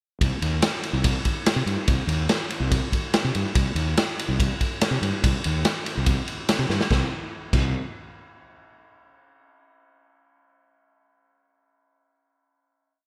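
A dry recording with little reverb carries this short, driving classic rock piece in C minor at 143 BPM, straight 4/4, built on a syncopated riff from a round, overdriven fuzz electric bass set up front. A raw garage drum kit shares the foreground with a saturated, rolled-off sound in a bright stone room, its punchy kick, medium-tuned snare, crash and ride pushing a big, gritty rock groove. The riff runs to 6.9 seconds, with a drum fill at 6.7 leading into a final note that lasts until 8.6 seconds.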